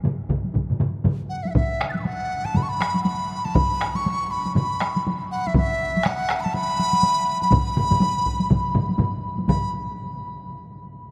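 A vast, echoing space with a long cathedral reverb surrounds this driving, powerful Japanese traditional taiko passage, cut from a longer piece. Drums fill the field from the first moments: one taiko ensemble strikes with heavy sticks in a small room, while a second ensemble, played with hard sticks, sits in the background. Two solo taiko drummers add to the weight, one close and dry, the other compressed and saturated further back. At 1.3 seconds a bamboo dizi enters up front, airy and buzzing from its membrane, with a crisp attack and vibrato as it ranges from E5 to A6 over a B suspended pentatonic centre. The groove runs in 4/4 at about 121 BPM with a swung sixteenth feel, and the tempo speeds up throughout, pushing toward a new section at 9.5 seconds.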